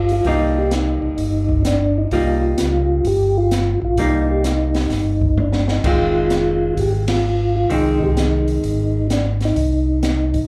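Bluesy and soulful, this soul jazz organ trio swings at 129 BPM in 4/4 and C minor, caught live in a club through the venue's PA with a moderate room around it. A percussive tonewheel organ carries the melody in a soft, flute-like voice with second harmonic percussion, turning through a slow rotary speaker with chorus vibrato, plate reverb and slapback echo. Beneath it, a second tonewheel organ holds the bass, round and up front with a touch of key click and its own slow rotary. A vintage hollow-body jazz guitar adds dark, picked accompaniment from 0.3 to 9.0 seconds, dressed in plate reverb and slapback echo. The acoustic drum kit sits lower in the mix, with dark cymbals, a high-tuned snare and a boomy kick, and it plays a fill at 5.4 seconds just before the chords move from Cm7 to Fm7, with a band accent landing at 7.0 seconds before the harmony settles on C minor.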